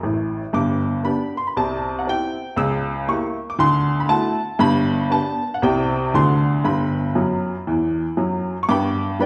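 Stride piano jazz, swinging and exuberant at 118 BPM in G major, this brief cut from a longer piece features a lone upright piano, clear and woody with a worn, slightly detuned character, placed up front and spanning G1 to E6, opening and closing with fills (at 0.0 and 7.2 seconds) as it moves through a progression centered on G, C and D7 inside a large, reverberant studio room.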